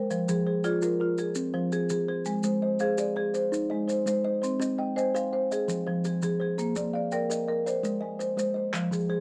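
A straight 12/8 pulse at 111 beats per minute, counted in dotted quarters, drives this trance-like, hypnotic cycle in the Southern African traditional style, built on mbira-style interlocking patterns in F dorian. It is cut from a longer piece. A dark, ringing kalimba, thumb-plucked on a solid board, spins smooth arpeggios up front, while a marimba played with medium mallets on rosewood bars adds warm, woody arpeggios of its own, also up front. Grainy, mellow maracas sit close and dry beneath them, and a crisp group handclap, human and set in a small room, snaps in briefly near the end at 8.7 seconds. The chords move from Fm through Ab and Cm, back to Fm, then Bb and Ab, and the recording carries light reverb and a worn cassette-tape character with warbling pitch drift.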